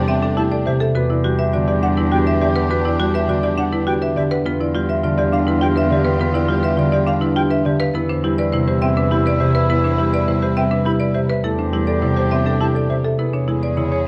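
Set in a straight 3/4 at 103 BPM, this meditative, hypnotic piece of minimalist classical pattern music in E minor is cut from a longer work. A marimba played with medium hard mallets carries the melody in a bright, woody voice, while a second marimba struck with hard mallets spins arpeggios with a buzzing, dry, vintage character. A mellow oboe with light vibrato traces a distant second line, and a ringing, fingerpicked concert harp supplies the accompaniment. A chamber string section holds smooth, even sustained chords in the background, and a single cello anchors the bass on a low E with rich, bowed tone, vibrato and portamento. A concert flute adds pure, softly attacked arpeggios from 0.1 to 13.0 seconds, and the dark production sits in a moderate large studio reverb as the harmony moves from D7sus4/E through Em7, G7/E and Cmaj7/E before closing on E7.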